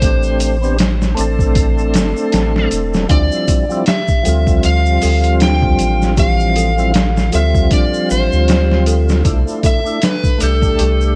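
Melancholic and cinematic, this short trip hop excerpt moves at a slow 78 BPM in D minor, with a swung sixteenth-note feel and a prominent crackle of vinyl over a dry, close sound. Up front, a gritty, pitched-down sampler-style drum kit pairs a thumpy kick and medium-tuned snare with hi-hat, carrying the grain of a vintage 12-bit sampler, while a round, deep analog bass sits equally forward beneath it. A lightly overdriven tonewheel organ with percussive attack fills the middle, colored by chorus vibrato, a slow rotary speaker, tremolo and tape echo. Over this, an overdriven electric slide guitar carries the melody through tape echo, and a bright tube shaker ticks quietly in the background. At 3.1 seconds a delicate, bell-like celesta enters with arpeggios behind the band, as the harmony moves from Am11 to Dm11 and settles on C69 at 9.3 seconds.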